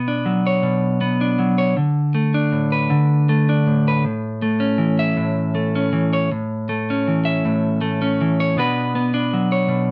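Highlife in a joyful, sunny mood at 106 BPM in a straight 12/8, this short cut from a longer piece features a solo clean electric guitar, dark-toned, picked and up front, ranging from A2 to E5 over chords moving from Bm through D5 and A back to Bm in A major, set in moderate studio reverb with the live feel of a band playing together in one room.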